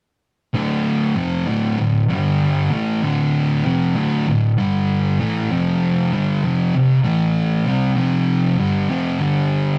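A thick fuzz guitar sits up front in this heavy, sludgy metal excerpt, its dark, picked riff spanning D2 to C4 in D minor at 97 BPM in a straight 4/4. A second distorted fuzz guitar plays a riff in the same range further back in the mix, adding weight behind the front guitar. Both guitars enter at 0.5 seconds and hold their riffs together until 9.8 seconds, forming a single section cut from a longer piece. The harmony moves from D minor through G5, A5 and F5 power chords, returning to G5 near the close. The rough rehearsal-room recording carries a short, wet booth ambience that keeps the sound close and murky.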